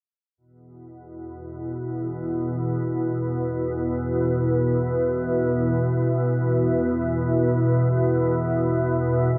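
Unsettling and ominous, this dark ambient drone floats in free time, a fragment cut from a longer piece. From 1.2 seconds an up-front, organ-like drone of detuned sine voices sits low beneath a deep, moody pad of sustained chords, full-bodied and sawtooth-edged with a sub octave, both with slow attacks, long releases and chorus. The whole is steeped in a huge reverb with an 8.3-second tail and colored by worn, warbling cassette tape whose pitch drifts.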